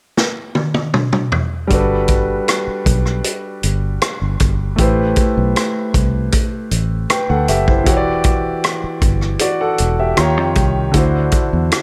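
A vintage drum kit opens this cinematic, bittersweet slice of lush 1970s-style soul at 78 BPM with a punchy, up-front fill from 0.2 seconds, before a clear, intimate grand piano with audible action noise and long sustain and a dark, round, foam-muted fingered electric bass enter at 1.7 seconds over a Gmaj7, Am7 and Em9 progression that turns through D#9 to D7, all set in light reverb and small-room ambience.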